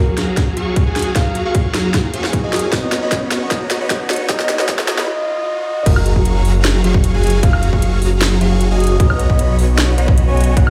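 Future bass at 153 BPM in a half-time feel and F# major, euphoric and playful, where huge, tape-worn supersaw chords with phaser and a mellow, round octave-layered lead with chorus and delay pump over a hard-clipped kick and a trap kit of sharp snare, metallic hats, crash and woodblock, while a faint shimmering pad fades out at 5.1 s and a very quiet riser carries the filtered build-up through a brief break into the drop at 5.9 s, where a thick detuned saw bass enters up front beneath F#maj9 and Bmaj9 chords.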